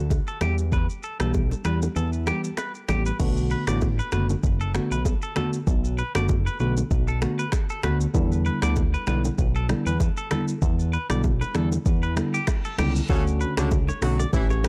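Joyful and romantic, this afrobeats piece at 97 BPM with a light sixteenth-note swing rides a fat, saturated analog bass and an up-front electronic drum kit of deep kick, crisp hats, finger snaps, rim clicks and shaker, while very quiet bongos and congas ring beneath a bright, twangy clean guitar riff with digital delay and a worn, slightly out-of-tune tine electric piano; the kick drops out from 2.0 to 3.2 seconds, and a background reverse cymbal at 12.3 seconds leads into a distant, roomy horn section with light vibrato that enters at 13.1 seconds, all within a dark, warm production.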